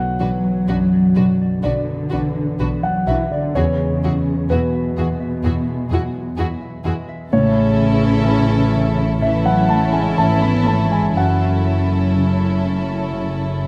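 A mellow, intimate grand piano sits up front with audible action noise, accompanying this sorrowful, longing cinematic film score, taken from a longer piece, at a rubato 63 BPM in 4/4, tuned to A4 = 441 Hz. A ringing, fingerpicked concert harp plays arpeggios in the background over a woody, smooth-topped cello section, and from 0.2 seconds the bowed strings join: a pure, floating sul tasto violin melody set far back, a second violin line with light vibrato, a distant, lush viola section and a close double bass section. The harmony moves from Bm through Eadd9 and A to F#m7, all held in a moderate scoring-stage reverb.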